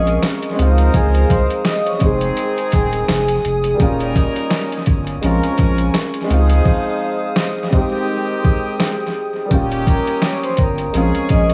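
Vinyl crackle and a small, echo-heavy room frame this gritty, moody boom-bap hip-hop excerpt at 84 BPM in Bb dorian, swung on the sixteenths, with a compressed, pitched-down sampler kit, a thumpy kick and a deep, saturated sine sub bass up front. A woody upright piano with audible action noise and a loose jazz horn section with light vibrato move through chords such as Bbm7, Dbmaj9 and Eb7 over a hollow, flute-like pad. A ringing vibraphone with slow motor vibrato carries the melody until 3.8 seconds and returns at 9.5 seconds, after a break that begins at 6.7 seconds.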